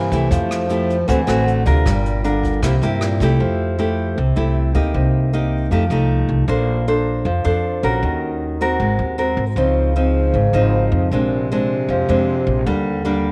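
A straight 4/4 bossa nova groove at 156 BPM in F major sets a sophisticated, breezy mood. It is carried by fingerpicked classical nylon-string guitar and a woody, pizzicato upright bass, both up front, with an airy jazz brush drum kit of hi-hat, boomy kick and rim click that stops at 3.3 s. A mellow bass clarinet with light vibrato adds a low jazz-style second line at the opening and returns at 9.6 s. The harmony moves through lush extended chords, from Fmaj9 toward Dbmaj9 and Ebmaj7, all heard in a moderate echo chamber reverb with small-room ambience.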